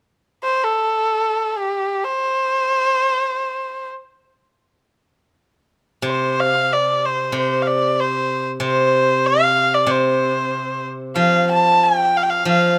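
Close, detailed microphones and light reverb give this graceful, festive Chinese traditional chamber piece an intimate, up-front sound. A single bowed erhu carries the melody from 0.4 s, its nasal, earthy tone shaped by light vibrato and portamento, moving freely in rubato around 72-96 BPM in 2/4 and the C zhi mode. At 6.0 s a steel-string zither, played with fingerpicks, joins in the low register with bright, ringing, silvery accompaniment until the cut at 12.8 s.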